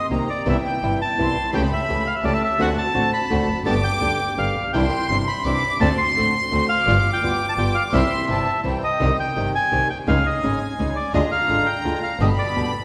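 Swaying in a rubato three-beat metre, this dramatic, passionate tango fragment is cut from a longer piece. A reedy, vintage bandoneon carries the melody up front, its tone slightly band-limited, while a rich studio violin section plays a second line with a bowed, gut-string, period-style sound. A small nylon-string guitar, fingerpicked and acoustic, supplies the accompaniment, and a single bowed double bass anchors the bottom with an earthy, airy-bowed tone. Very quiet and distant, a bright symphonic string section adds intense stabs touched with light vibrato. The whole ensemble sits in the generous reverb of a church or concert hall, and at 9.0 s the harmony darkens into a minor colour that heightens the drama.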